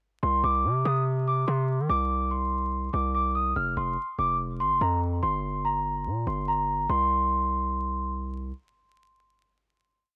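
A cassette-taped home recording with vinyl crackle, small-room ambience and a moderate spring reverb frames this menacing, cold drill piece in C minor at 144 BPM, felt in half-time. A large celesta plays a looping, sampled-sounding melody, bell-like, delicate and sweet yet vintage and band-limited through a low-pass filter and analog delay, over a Csus2, F5 and Gm progression. Beneath it, a distorted 808-style bass pushes up front with heavy, aggressive long sub-bass notes and pitch slides until 8.5 seconds, and the breakdown gives way at 6.9 seconds to a final note that rings out to 10.2 seconds.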